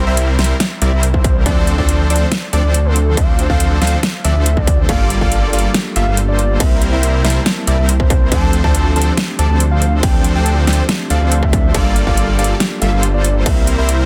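A fat, detuned sawtooth polysynth riff and a thick, up-front detuned saw bass open this bittersweet, emotional future bass excerpt in D minor, both pumping against the sidechain at 140 BPM with a half-time feel in 4/4. The polysynth carries chorus and digital delay, while the bass adds chorus to its lush unison tone. Almost immediately a round, triangle-based synth lead enters with a sub-octave layer and vibrato, its dark melody sitting lower in the mix and trailing dub echo. A dubstep kit with a huge snare, metallic hats and ride cymbal joins at 0.2 seconds, and a distorted, tape-tinged electronic kick lands at 1.1 seconds. From 4.9 seconds a bell-like tine electric piano adds clean accompaniment in the background, pumping and repeating through digital delay. The chords cycle through C7, Dm7 and Gm9, and the dense, heavily limited master keeps the sound dry and close, with little reverb.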